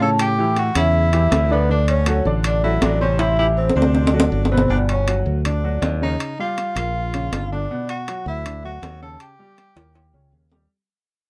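Afro-Cuban jazz at 160 BPM in D major, sophisticated and danceable, with a mellow soft-mallet vibraphone carrying the melody over a slow motor vibrato while a clear tenor saxophone adds a second line beneath it, with vibrato and scooped notes. A woody, slightly detuned upright piano provides accompaniment, a growly fingered electric bass sits up front, and close, dry metal-shell timbales ring out, with drum fills at 3.2 and 9.8 seconds. The sound has a modest booth ambience, and the music fades out from 4.7 seconds through the harmony's move to Gmaj7 and on to its close.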